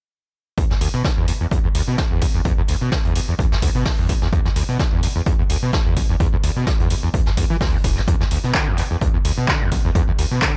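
Opening at 0.6 s with a squelchy, gritty sawtooth acid bass riff, distorted, chorused, delayed and pumping up front beside a dry, punchy electronic kick, with a natural brushed vintage kit's high-pass-filtered hi-hat and snare and its rolled-off top, this raw acid house excerpt at 128 BPM in swung 4/4 brings in a booming, tape-warm analog drum machine's metallic hats and handclaps at 0.8 s, all set in a small room ambience.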